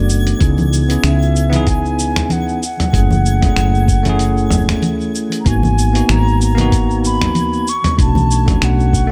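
An echo-heavy mix with light reverb frames this short sunset chillout excerpt, a relaxed piece in C# minor at 95 BPM with a lazy swing on the 16ths. A baroque flute carries the melody with a pure, wooden tone, soft attack and vibrato, trailing dub echo behind it. Up front, a bell-like tine electric piano plays bright, clean chords through C#m9, F#m9, G#m9 and Bm9, shaped by a low-pass filter sweep across the whole passage and an analog delay. A dark, round fretless bass with a woody, hollow-body character anchors the low end, thickened by tube saturation and ensemble chorus. A gritty, compressed, tape-warm sampler-style kit of finger snaps, hi-hat, shaker and toms comes in almost at once and is joined at 0.4 seconds by a thumpy electronic kick, while congas with analog delay sit in the background from 0.6 seconds until 8.3 seconds and a twinkling granular texture with an octave-up shimmer glints high above in its own reverb.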